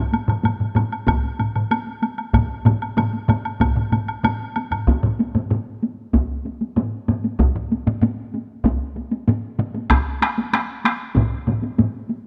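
Japanese traditional taiko drum ensemble music at 95 BPM in a straight 4/4, powerful and ceremonial, where several mostly up-front layers of taiko struck with hard and heavy sticks gather in the opening seconds, one layer carrying a vintage, band-limited tone, while a woody, close and dry woodblock sounds alongside until 4.9 s, recorded with close, detailed microphones and light reverb in this passage cut from a longer piece.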